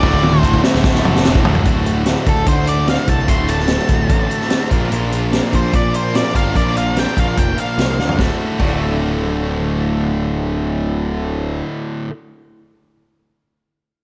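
A straight 4/4 classic rock groove at 147 BPM opens with a drum fill from a punchy, up-front vintage kit with dark cymbals and a high-tuned snare, while a crisp group handclap sits in the background from 0.5 to 1.3 s and a very quiet, double-tracked tight distorted guitar plays a low riff only until 1.7 s. Two bright, picked distorted electric guitars, one overdriven and one further back, drive the riff over a growly, fuzz-laden picked bass, and a dark octave-fuzz lead guitar with tape echo takes a solo from 1.7 to 8.2 s as the harmony moves from D to Bb and back to D. The mood is sunny and confident, set in a light reverb, and the passage is cut from a longer piece.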